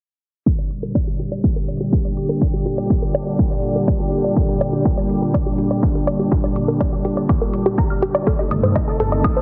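A bright, evolving sawtooth pad with chorus, gritty 12-bit sampler texture and sidechain pumping sustains chords over a lush, detuned unison pluck arpeggio that is filter-swept and trailed by dub echo, while a punchy, overdriven kick in a large room drives this hypnotic, dramatic melodic techno, with dark hi-hats tucked in the background and a deep, rumbling detuned saw bass arriving only at 8.5 seconds as the harmony moves from G minor to A diminished over G, all heard through a heavily compressed, low-passed radio-like sound with light digital ambience.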